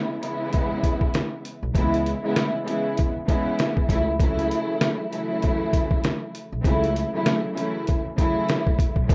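Boom-bap hip-hop at 98 BPM with a 16th-note swing, this gritty, tough excerpt opens on a dark, lush bowed string section with vibrato, filtered at both ends, moving from C#m7 to F#m7/C#. A compressed, pitched-down sampler-style drum kit arrives at 0.2 seconds with a thumpy kick, medium-tuned snare and hi-hat, sitting up front with a small-room grit. A woody pizzicato upright bass joins at 1.6 seconds, all in a dry, rough home-demo mix.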